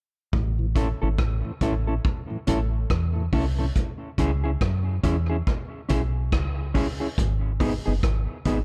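A hypnotic, heavy dub reggae excerpt opens with a deep, foam-muted fingered electric bass, direct and amped, and a vintage acoustic drum kit of punchy kick, hi-hat and rim click in a small, pumping room with a rolled-off top, both up front. A mellow, round tonewheel organ, lightly overdriven with chorus vibrato, slow rotary speaker and dub echo, sits in the background from 0.6 to 3.7 s, while a clean, fingered electric guitar with dub echo joins at 0.8 s and plays on to the end. The production is dark and warm, with swung sixteenths and chords moving from A to C#m to G#m.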